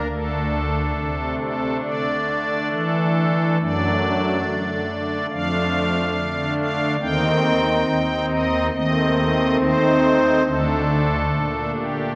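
A soft, shimmering pipe organ playing alone on its celeste string stops carries this grave, solemn classical chorale at a rubato 70 BPM in 4/4, its romantic voicing spanning D2 to G5 and moving from D5 through D/F#, Dm/F, Cm/Eb and Adim/Eb before settling back on D5 at 10.5 seconds, all heard from further back in a church with a long, wet reverb in a passage cut from a longer piece.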